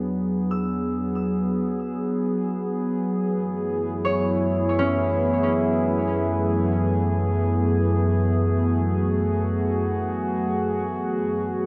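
Floating in free time, this peaceful ambient excerpt rests on a warbling, nostalgic tape-like pad holding sustained chords up front, moving from E9 to F#m11 at 2.6 seconds, over a deep, ominous rumbling bass drone that fades in across the whole passage. A bright, ringing concert harp spins thumb-plucked arpeggios through tape echo until 7.7 seconds, while a vintage, resonant analog drone with chorus enters in the background at 3.5 seconds. A lush plate reverb and echo-heavy mix give the sound a soft, lo-fi haze.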